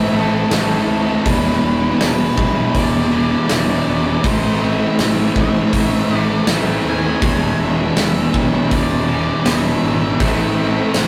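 Shoegaze and dream-pop rock, hazy and dreamy, built on a thick fuzz guitar riff, with overdriven double-tracked and lo-fi garage guitars riffing in the background, a dark octave-fuzz lead melody, a bright twangy twelve-string electric guitar's very quiet arpeggios, a round fuzz fingered electric bass and a mellow vintage organ-string ensemble holding very quiet chords over Amadd9 and E7, while a big-room acoustic drum kit with a tight kick joins at 0.5 seconds and a jingly tambourine slips in at 8.0 seconds, all set in a rough rehearsal-room recording with wet ambience and warm saturation.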